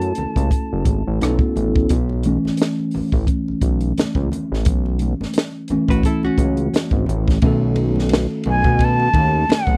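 Late-night and sultry, this neo-soul R&B excerpt sits at 87 BPM with a lightly swung sixteenth feel, its worn, slightly out-of-tune electric piano pushed through a combo amp with gentle overdrive and taking a solo from 1.9 to 7.4 seconds over B9sus4 harmony. A fat, detuned sawtooth bass with a filter sweep and a compact cocktail kit with dark cymbals, a high-tuned snare and a punchy kick sit up front, while very quiet, ringing congas tick along beneath. An airy metal flute with expressive vibrato frames the opening and closing seconds, and a dark, clean, hollow-body archtop guitar adds a brief picked line near 5.9 seconds, all in a dry, close 1970s-style studio sound.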